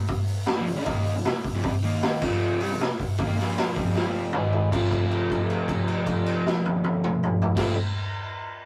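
A rough, tube-saturated rehearsal-room recording with a short, wet booth ambience frames this raw, rowdy garage rock excerpt in straight 4/4. A gritty, up-front acoustic kit with a boomy kick, medium-tuned snare and rolled-off top starts at 0.1 s, joined at 0.5 s by a crunchy, double-tracked overdriven electric guitar picking a riff over F5, Eb5, Bb5 and Ab5. After a drum fill from 4.0 s, the music lands on F and a note is held from 4.7 s to 7.6 s.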